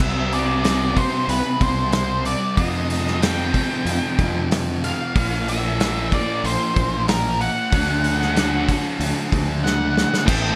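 Shoegaze and dream pop rock in a hazy, blissful mood, where a dark octave-fuzz lead guitar carries the melody with slapback echo over a biting overdriven guitar riff trailing reverse reverb and a thick fuzz guitar riff colored by analog chorus, both set back in the mix, while an overdriven fingered electric bass and an up-front loose indie drum kit with a punchy kick, dusky cymbals and a rolled-off top move through Csus2, F7, Bb and D, a drum fill at 9.6 s leading into a brief double-tracked sludgy distorted guitar riff at 10.3 s in this short excerpt from a longer piece.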